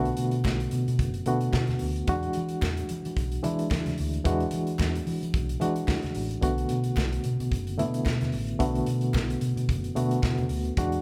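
A driving, sultry disco groove at 110 BPM in B dorian, this excerpt swings its sixteenths as a live band shares one large studio room, moving from Bm7 to E9 at 2.1 s and back to Bm7 at 6.4 s. An up-front, reedy electric piano with tremolo comps over a dark, round hollow-body bass, while a tight acoustic drum kit with a medium-tuned snare sets the pulse. Very quiet, low-tuned congas with a thick skin and crisp, saturated group handclaps join at 0.4 s.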